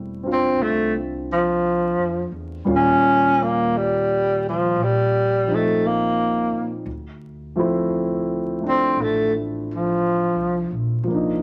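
A slow 4/4 pulse at 57 BPM, with a gentle swing on the eighth notes, sets the pace for this tender, late-night jazz ballad, heard as a short cut from a longer piece. The upright bass plays pizzicato on steel strings, giving a woody, acoustic low end beneath a concert grand piano whose accompaniment sounds open, with a deep bass register, and sits up front. Entering at 0.3 s and carrying the melody until 10.7 s, the tenor saxophone is the loudest part, a breathy, whispered solo voice with vibrato, soft attacks and scooped notes in an intimate jazz style. The harmony moves from Fmaj7 to Eb9 and then to Dm9. Moderate studio reverb lends a sense of space, while a layer of vinyl crackle adds a worn surface to the tender, late-night mood.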